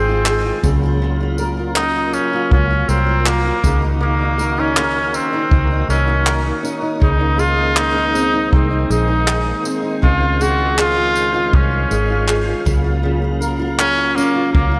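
Heartfelt and easy-going, this dreamy acoustic pop excerpt sets a clear, up-front trumpet melody with light vibrato, scooped notes and analog delay over double-tracked fingerpicked steel-string acoustic guitar, a lightly overdriven tonewheel organ holding sustained chords through chorus vibrato and a slow rotary speaker, a dark, round, foam-muted electric bass, and a brushed jazz kit with punchy kick, handclaps and tambourine entering at 0.3 seconds, all floating in a lush hall reverb over chords such as Gbmaj7/Db and Abadd9/Db.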